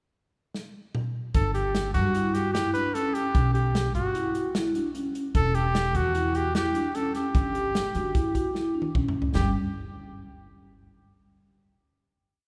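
Progressive instrumental band music in 5/4 at 150 BPM in G lydian, intricate and driving, opens with an airy acoustic drum kit fill at 0.5 s before woody pizzicato upright bass, a breathy, clear jazz-style trumpet playing up-front arching motifs with light vibrato, and mellow soft-mallet vibraphone ringing out an ostinato with fast motor vibrato all join around 1.3 s, moving through Gmaj7, Em and G5 until a second drum fill leads to a final note at 9.3 s that hangs in a wet church reverb.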